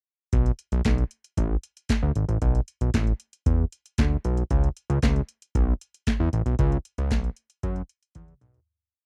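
A fat analog bass anchors this short early-eighties boogie funk piece, its detuned sawtooth tone saturated and thick, with a filter pluck on each fast-attack note that then sustains and evolves as it moves through a syncopated boogie line between G#1 and F#2. Beside it sits a booming analog drum machine, overdriven and re-recorded in a small room, laying down a four-on-the-floor beat with a deep kick, crisp snare layered with handclaps, metallic hi-hats and toms. A short room touch clings to the snare, clap and hats, while the rest of the sound stays dry and close in a 1970s-style studio manner, both parts up front. At 115 BPM in straight 4/4 and B dorian, the whole thing plays as a stripped-down breakdown with a late-night, danceable mood. A fade-out begins at 6.6 seconds, and a drum fill closes the piece at 8.2 seconds.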